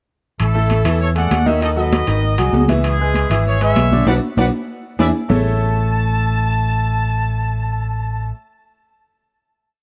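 A punchy, vintage trumpet section leads this short, sunny and festive salsa piece with motif-based call phrases partly doubled in thirds, over a round, up-front fingered electric bass playing a tumbao that anticipates the chords, a brilliant grand piano montuno in octaves, ringing high-tuned congas with slaps and open strokes, and saturated metal-shell timbales working a shell pattern and bell, until a band accent at 4.1 seconds gives way to a final chord at 5.3 seconds, with the congas and timbales stopping at 5.4 seconds, in a dark production with light reverb.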